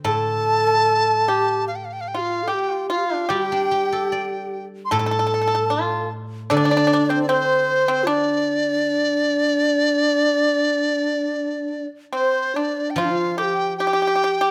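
A large dizi leads up front with a pure, buzzing-membrane tone, crisp attack and vibrato, carrying a wistful, graceful melody in this rubato Chinese traditional chamber piece, cut from a longer work. Beneath it, a breathy, mellow end-blown xiao with tongued notes and vibrato and a dry, percussive pipa played with fingerpicks share the second line, while a silvery, ringing guzheng supplies the accompaniment. Light reverb and close, detailed microphones frame the ensemble, and a new section arrives at 13.0 seconds.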